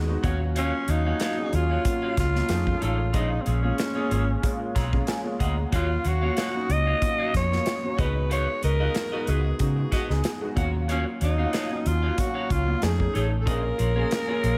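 A raspy alto saxophone carries the melody up front, its gritty tone smoothed on top and shaded with vibrato, entering at 0.6 seconds. Beneath it, a dark, round fingered electric bass with a foam-muted, punchy sound sits forward in the mix. A concert grand piano with deep lows, a boxy character and long sustain plays accompaniment through an ensemble chorus, stepping out for a fill between 4.4 and 5.7 seconds. A clean, picked electric guitar adds a riff treated with lush chorus, and an acoustic studio drum kit with a tight kick and a medium-tuned snare keeps time on hi-hat, kick and snare. This is polished 1980s jazz-funk pop with a lightly swung sixteenth-note feel, its slick, bittersweet mood colored by minor ninth and altered chords, set in a small room ambience and cut from a longer piece.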